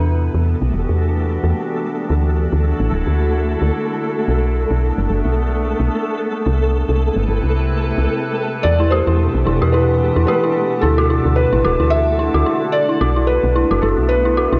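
A glassy, ethereal FM pad opens this glitchy, eerie IDM piece, holding slow-blooming chords through an ensemble chorus and its own reverb while a woody, round FM bass sits up front beneath it with fast, decaying notes. Almost at once a flickering, grainy granular texture drifts in, detuned and sustained with long tails, adding an unsettled shimmer under a lightly swung 4/4 pulse. The harmony cycles through Em7, Dadd9, Bm7 and Amadd9 in a slow, brooding loop. At 8.6 seconds a felt-muted upright piano takes the melody, intimate and hushed in a vintage way, and moments later a dark, detuned synth bell joins with inharmonic, warbling arpeggios thickened by chorus and analog delay. The whole passage carries a dry, gritty hardware character with cassette-tape coloring and only a light touch of room reverb, and it is cut from a longer piece.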